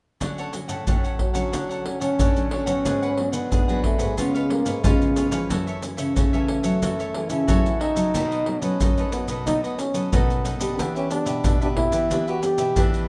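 A breathy, mellow trombone carries the jazz-inflected solo melody from 1.2 s, its present tone shaded with vibrato and scooped notes over a lively, playful samba-choro groove in straight 4/4. Beneath it, a crisp, picked cavaquinho and a fingerpicked nylon-string guitar with a deep classical sound share the accompaniment, while a second nylon-string guitar, thumb-plucked on fresh strings, lays down the bass line through a progression that moves from Dmaj7 toward Em7. Up-front maracas, pandeiro and a deep surdo played with soft hands keep the pulse, all set in a moderate, large studio reverb in this fragment cut from a longer piece.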